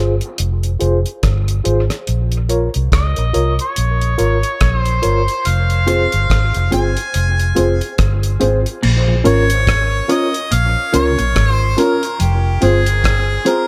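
A lightly reverberant small-room sound frames this meditative, spacious dub reggae fragment, where a reedy electric piano plays stabs through fast tremolo, low-pass filter and dub echo over a round, foam-muted fingered bass and a cloth-damped, gritty drum kit of kick, hi-hat, rim click and crash, before a distant, roomy harmonica takes the melody at 2.9 seconds, a dark, compressed electric guitar adds echoed accompaniment, a clean guitar riff colored by phaser arrives at 8.8 seconds, and a mellow tonewheel organ with slow rotary speaker sounds only briefly at 9.1 seconds.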